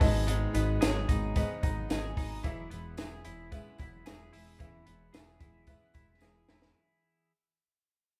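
A straight 4/4 pulse at 111 BPM drives this short, breezy and nostalgic slice of jangly indie pop in E major, moving from G#m to E as the whole band fades out together in one lightly reverberant room. A small, up-front cocktail drum kit with a punchy kick and high-tuned snare sits beside a round, direct picked electric bass, while a bright, twangy twelve-string electric guitar plays compressed arpeggios through spring reverb. A fresh-stringed acoustic guitar with audible finger squeak adds warm picked accompaniment, while a woody, boxy, slightly detuned upright piano and a jingly, dry tambourine sit in the background before a drum fill arrives at 6.2 seconds.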